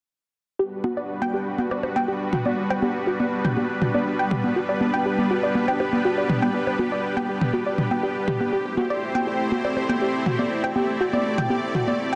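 At 0.6 s a lush, detuned supersaw pad holding sustained chords under a low-pass filter sweep arrives with a glassy wavetable pluck playing chorused, delayed arpeggios, and at 0.8 s dry, overdriven electronic congas, bongos and toms join this euphoric, expansive progressive house excerpt, which moves from Gmaj7 to Am7 at 8.5 s inside a moderate hall reverb and a dense, heavily limited modern master.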